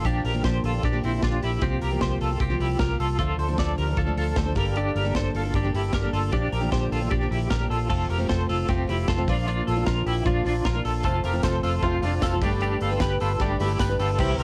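Jangly indie pop at 153 BPM in 4/4, nostalgic and youthful, with a light-reverb, cassette-taped home-recording feel in this short excerpt. A warm, clean, up-front twelve-string electric guitar plays arpeggios through tremolo and analog delay over a bright, full-bodied jumbo acoustic guitar, a dark, foam-muted fingered bass and an airy acoustic kit with punchy kick and bright cymbals, moving from Bb6 through C7sus4, Dm and Gmadd9. At 11.0 seconds a buzzy combo organ joins in the background alongside a very quiet, jingly tambourine, and at 14.2 seconds a warbling sawtooth string-machine viola chord with ensemble chorus arrives just as the clip ends.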